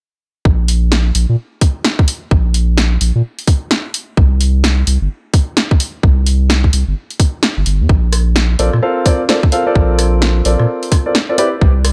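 A saturated sub bass anchors this bouncy, sunny two-step UK garage cut, its deep, thick sine tone sitting up front with a fast attack and sustained notes from 0.5 seconds onward. Alongside it, a tight, layered electronic kick drum carries a tape-warmed character and the air of a large room. A punchy analog drum machine supplies hi-hat, rim click and a punchy snare, re-recorded in a small room and set close in the mix. The groove runs at 129 BPM in 4/4 with a 62% swing on the sixteenths, in Bb major, moving from an open, chordless stretch to Bbmaj9 and then Cmaj9. At 8.6 seconds a dark, mellow concert grand enters with stabs treated by tape echo, adding natural depth in a dry, close-sounding mix.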